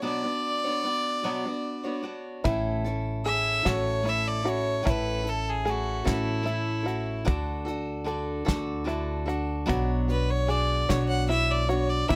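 Gentle and warm, this short acoustic folk passage in a lilting 6/8 is cut from a longer piece. It opens with a reedy, gut-string fiddle carrying the melody over a picked steel-string acoustic guitar, both up front, on a Bmadd9 chord. At 2.4 seconds the fiddle moves into a solo as the harmony turns to A, and a mellow, plunky open-back banjo joins with fingerpicked arpeggios. A woody, pizzicato upright bass and a brushed drum kit with hi-hat, punchy kick and medium-tuned snare follow at 2.5 seconds. The chords then pass through D before returning to Bmadd9. Close, detailed microphones and little reverb give the small band an intimate, dry presence.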